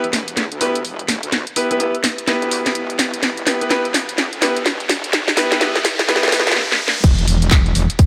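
This short bass house excerpt sounds up front, set in a moderate, lush hall reverb with a clean, filtered low end, and it moves at 126 BPM in 4/4 with a swung sixteenth-note feel in E minor over a single Em chord. The mood is bouncy and aggressive: a bright, brilliant concert grand piano plays stabs with deep bass and long sustain, pumped by sidechain and trailed by digital delay until 6.6 seconds. Underneath, a metallic wobble bass growls with saturated, compressed FM tone, chorus and sidechain pumping, while a garage drum kit with a cracking snare, handclaps, hi-hat and crash drives a build-up full of drum fills. A very quiet electronic riser enters at 2.0 seconds, and at 7.0 seconds the harmony drops away as a tight, layered electronic kick hits hard with an impact. At the drop, a distant, roomy brush kit adds a faint hi-hat and snare beneath the kick.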